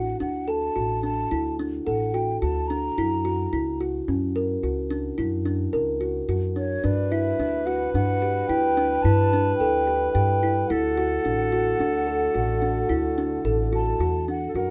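A close-miked kalimba sits up front in this restless, playful chamber piece, its woody, thumbnail-plucked arpeggios ringing bright and dry from the opening second. The music moves at 109 BPM in an uneven 7/4 with a straight feel, in D major, cycling through D, F#, G and back to D. An airy concert flute with vibrato carries the tongued melody above, while a dark pizzicato upright bass on steel strings anchors the low end. At 6.8 seconds a mellow, classical-style clarinet joins with a second line, and a very quiet French horn section adds warm, tight sustained chords with a soft attack and light vibrato. A touch of reverb frames the ensemble, and this passage, cut from a longer piece, ends at 14.7 seconds.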